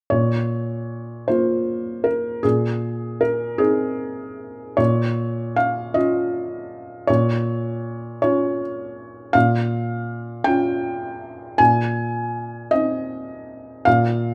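A felt-muted upright piano plays alone from 0.1 to 14.3 seconds in this intimate, melancholic fragment of neoclassical minimalist music, moving rubato in 6/8 at 53 BPM (dotted quarters) in Bb dorian, tuned to A4 = 444 Hz. Its soft, mellow tone sits up front with audible action noise and short sustain, spanning Bb2 to Ab5 over harmony that alternates between Bbm and Ab/Bb. A moderate stone-room reverb of about 1.0 second surrounds the instrument.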